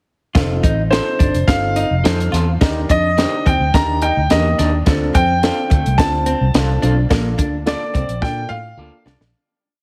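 A dark, clean hollow-body jazz guitar opens at 0.3 s with a repeated picked figure, and the full band joins almost at once in this short, joyful 1960s-style soul piece at an uptempo 107 BPM in F mixolydian. A compact cocktail kit sits up front with a punchy kick and a high-tuned snare hitting on every beat, while a foam-muted, round fingered electric bass plays a melodic, syncopated line with chromatic approach notes. A woody upright piano plays quarter-note chords in close voicing, and from 0.9 s a brilliant grand piano carries a free, roaming melody up front as a slightly broken-up, twangy guitar adds short chops on the backbeat in the background. The harmony moves from F7 through Ebmaj7 and Dm7 to Bbmaj7 over a single verse. A drum fill enters at 8.2 s as the piece fades out, all wrapped in light reverb and a heavily compressed, radio-like sound.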